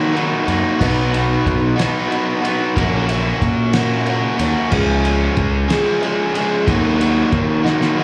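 An overdriven, double-tracked electric guitar sits bright and up front playing a riff in this jangly, upbeat indie rock excerpt in F# major at 61 BPM in 6/8, over a fuzzy, direct-and-amped picked electric bass and a cloth-damped, muffled drum kit with a fat snare, tight kick and dark cymbals that enters at 0.2 seconds and closes with a fill at 7.7 seconds, all heard as a live gig through a club PA with light reverb as the chords move from D#m through B, F#/A# and C# back to D#m.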